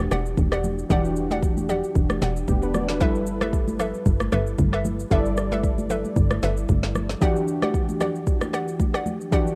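Amapiano in E minor at 114 BPM, this deep, late-night fragment moves with a 55% swing on the 16ths through Em9, G69 and back to Em9. Round, detuned analog keys sit up front, their sawtooth and square tones carrying a sub octave, a filter sweep and a chorus, with a cassette tape colour. A punchy, funky analog bass built from wave-folded sawtooth, pulse, sine and triangle tones plucks low between E1 and G1, dropping out at 7.2 seconds. A hollow, bouncy square-wave pluck adds short stabs in the upper register, thickened by chorus, tape character and analog delay. The electronic afro-pop kit brings a deep kick, woody snare, rim click and shaker to the front, while bright, thin-skinned congas played with soft hands stay close and dry in the background. The home cassette recording has little reverb, giving the groove an intimate, unpolished feel.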